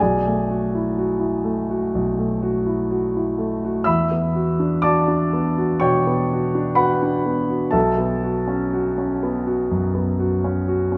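Mysterious and nocturnal, this short passage from a longer impressionist solo piano piece drifts in B minor at a rubato 62 BPM in 4/4, tuned to A4 = 439 Hz. A grand piano with an open tone and long sustain sits up front, spanning B1 to E6 as its chords move from F#m9/B to Em9 at 3.9 seconds and settle on Bsus2 at 7.7 seconds. A wet scoring-stage reverb with a 1.9-second decay surrounds the instrument, lending the 11-second fragment a hazy, spacious air.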